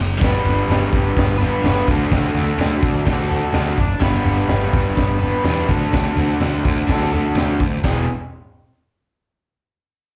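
A straight 4/4 garage rock groove at 125 BPM drives this rowdy, swaggering excerpt, where a crunchy breakbeat kit with a punchy kick, high-tuned snare, china cymbal and toms sounds gritty and dark, a fuzz-drenched picked bass rumbles low, and an up-front, double-tracked overdriven guitar riff rings bright with slapback echo over G and D chords, all heard like a live gig through the venue's PA onto cassette with club reverb and a dulled top end, before a shift to E at 7.9 seconds as the cut ends.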